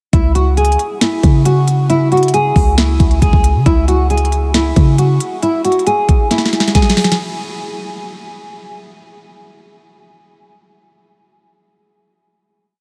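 A half-time trap beat drives this hard-hitting, eerie hip hop piece, with a knocking kick, sharp snare and crisp hats rolling fast, all roughened by overdrive and vintage 12-bit sampler grit, ending in a drum fill at 6.3 seconds. A boomy 808-style bass plays long sub-bass notes with pitch slides that follow the kick until 5.2 seconds. Above it, a dark, fingerpicked nylon-string guitar repeats a looping classical melody like a sampled loop, with audible finger squeak, chorus and delay, and a huge ambient reverb soaks the mix in a dreamy haze.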